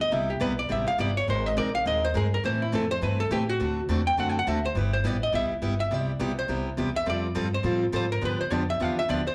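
A miked, amplified hollow-body archtop guitar takes a clean, dark solo up front, carrying the second line across the whole clip with plate reverb and slapback echo in a cheerful, swinging western swing number in C major at 207 BPM. A boxy parlour steel-string acoustic guitar, picked with fresh strings, plays the accompaniment alongside it with the same plate reverb and slapback, while a woody, growly upright bass plucks the low end through changes like Cmaj7, Abadd9, D7 and G7. It sounds like a live club gig heard through the venue's PA, with moderate room reverb, cut from a longer piece.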